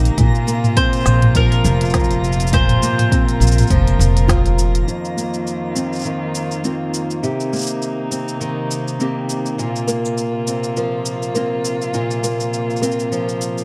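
A bright, fingerpicked nylon-string guitar sits up front in this hopeful folktronica passage, playing classical-style arpeggios under a low-pass filter and tape echo, with a filter sweep on the guitar through the second half. Beneath it, a muted string quartet holds dark, veiled chords con sordino, one bowed player per line with vibrato, giving a close chamber feel. Early on, a woody pizzicato upright bass anchors the low end alongside an overdriven, deep electronic kick, while a mandolin adds a short picked melody in double strings and a faint twinkling granular shimmer sparkles in the background. These parts fall away around 4.9 seconds, leaving the guitar, strings and an organic electronic kit of cabasa, crisp hats, toms and a woody snare to carry a gently swung groove in 4/4. Near 9.9 seconds a buzzing kalimba enters with a boxy, thumbnail-plucked second line roughened by 12-bit sampler grit and tape echo, over chords moving from Bbsus2 through F7sus4 and Cm7 back to Bbsus2, all in a warm, lightly reverberant space.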